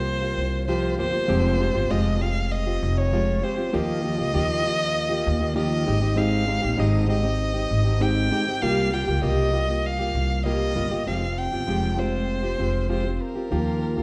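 Acoustic pop in F minor at 98 BPM, tender and reflective, this short excerpt sets a rich, airy sul tasto violin melody with vibrato and a soft attack over a fingerpicked, full-bodied plugged-in steel-string acoustic guitar and a woody pizzicato upright bass, all three playing throughout the 14.0 seconds in the resonant wash of a recital hall, moving through chords such as C7sus4, Fmadd9, Ebadd9 and Abmaj7.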